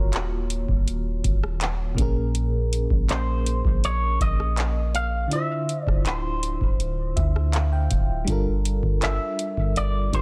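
A booming analog drum machine sets a straight 4/4 pulse at 81 BPM, its deep kick, metallic hi-hat, handclaps and rim click sounding dry and up front, with a soft, round 808-style bass sitting just as close underneath. This is a longing, moody slice of contemporary R&B, cut from a longer piece and moving through minor ninth chords from Ebm9 to Bbm9, Dm9 and Gm9. A mellow FM electric piano with tremolo and a faint noise layer carries the harmony, adding a fill between 6.8 and 8.3 seconds. Above it, a clean, picked electric guitar run through an envelope filter plays a compressed, twangy melody in a narrow upper range, trailed by tape echo. Digital ambience surrounds the parts, and the whole mix sits in a dense, heavily limited modern master.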